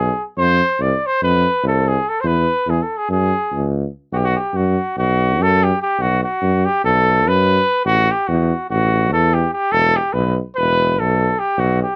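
Set in a 9/8 metre with a straight feel and a tempo of 289 BPM counted in eighths, this fiery, virtuosic Balkan folk excerpt is cut from a longer piece and is tuned to A4 = 444 Hz. A mellow, vintage-toned trumpet carries the melody in a classical style, up front, while a tuba with light vibrato and a soft attack holds the bass with a roomy, distant character. The close, detailed recording carries little reverb, and a new section arrives at 4.1 seconds and runs until the trumpet finishes at 12.0 seconds.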